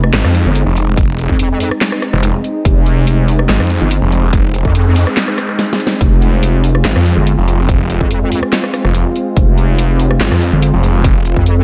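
Menacing and heavy, this half-time wobble dubstep excerpt in F minor moves at 143 BPM, held on a single F minor chord, with a wobbling, detuned square-wave bass thick with chorus and overdrive sitting up front beside a snarling, growling sawtooth bass whose distortion and resonant moving notch give it an aggressive bite. A lush, bright supersaw pad sustains chords under sidechain pumping and a low-pass filter, while a dubstep kit of handclaps, metallic hi-hats, rim clicks and a huge snare, joined at 1.0 seconds by a punchy, tape-warm electronic kick, drives the groove. From 4.7 seconds an electronic noise sweep leads into a short break at 5.2 seconds, capped by a drum fill at 5.6 seconds, all set in light digital ambience.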